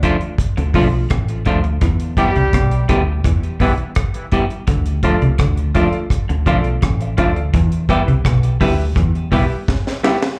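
Opening with dry, up-front reggae drums (high-tuned snare, tight kick, rim click and hi-hat), a round, punchy foam-muted fingered bass and a clean, scooped semi-hollow guitar accompaniment soaked in tape and slapback echo, this laid-back, serious roots reggae excerpt at 84 BPM moves between Dm and Em as a very quiet picked hollow-body guitar riff joins, a brilliant, close-miked trombone section adds an echoed second line until 3.7 seconds, a woody, slightly detuned upright piano stabs in from 5.0 seconds, and a drum fill closes it out, all heard through a venue PA onto cassette with light club reverb.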